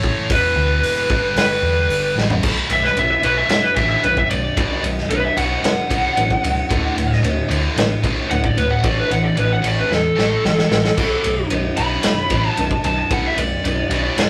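A hard rock excerpt in B minor at 112 BPM opens with all four parts together: an overdriven lead guitar through a small cranked amp sits up front over a bright, double-tracked high-gain riff guitar, a round, hollow-body short-scale bass, and a gritty garage drum kit with dark cymbals and a punchy kick. After a drum fill at 2.2 seconds, the lo-fi lead launches into a solo at 2.4 seconds that runs to the end, with another fill from 9.9 to 11.0 seconds as the chords move through D, A5 and back to Bm. The heavy, aggressive sound has the rough feel of a rehearsal room, with tube saturation and moderate reverb.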